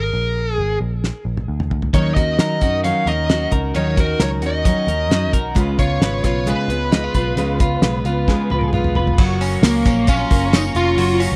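A smooth, overdriven lead guitar carries the melody from the opening, its dark, up-front tone trailed by tape echo in this youthful, breezy stretch of jangly indie pop, cut from a longer piece, in a straight 4/4. Beneath it, a vintage muted electric bass gives round, punchy notes colored by tube saturation, and a cloth-damped drum kit enters with a fill at 1.0 s, its thuddy fat snare, tight kick, toms, hi-hat and dark crash cymbal sitting close with a rolled-off top. At 1.9 s a bright, clean, compressed twelve-string electric guitar adds arpeggios alongside a full-bodied jumbo steel-string acoustic guitar, picked with a touch of finger squeak, as the harmony moves from A# through D#m7 to C#7. Another drum fill leads to F#maj7 at 9.2 s, where a soft-attack, sul tasto studio string section floats in the background with pure sustained chords and a jingly, band-limited vintage tambourine joins it. 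The whole track has a dry, close 1970s-style studio sound with little reverb.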